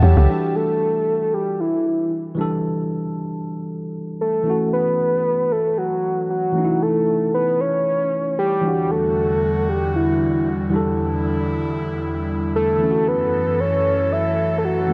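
Hypnotic and soulful, this amapiano excerpt moves at 115 BPM in E dorian with a gentle 16th-note swing, drifting between Em9 and F#m7 under light reverb and digital ambience. A soft, round synth lead with a sub octave, vibrato and a dark edge carries the melody through chorus and digital delay, while a worn, slightly out-of-tune tine electric piano, clean through a combo amp and bathed in lush chorus, plays the accompaniment throughout. An airy, breathy pad with a detuned tone, a noise layer and slow attack sustains chords, briefly at the very start and then again from 8.6 seconds to the end.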